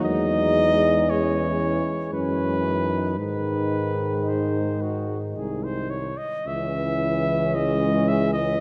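Moving in a slow, rubato 3/4 at around 54-58 BPM, this short excerpt of a classical, hymn-like brass band piece in C# minor carries an elegiac, solemn mood. Up front, a mellow cornet sings the melody with light vibrato and a smooth top, while a clear, punchy French horn section with light vibrato holds a second line in the background. Two euphoniums supply the accompaniment from behind: one close-miked with vibrato, the other soft in attack, distant and roomy. Also up front, a warm tuba anchors the bass, and the whole band sounds for the full 8.6 seconds. The harmony moves from C#m/E through F#5 and G# before settling on C#m at 6.5 seconds, all bathed in a wet concert hall reverb.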